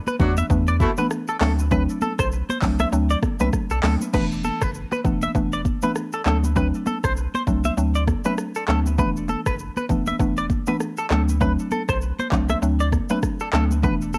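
Joyful and sunny, this afrobeats fragment swings over a home-cassette sound, with a woody, warbling synth pluck, a twangy clean electric guitar riff carrying analog chorus and tape echo, and a deep, round analog bass anchoring the E7sus4 to D7 changes. An up-front electronic afro-pop drum kit with a deep kick, dark hats, handclaps, rim clicks, shaker and crash cymbal drives the groove, while bright, high-tuned congas sit dry in the background. A smooth-topped horn section with light vibrato appears only briefly, from 0.2 to 0.9 seconds.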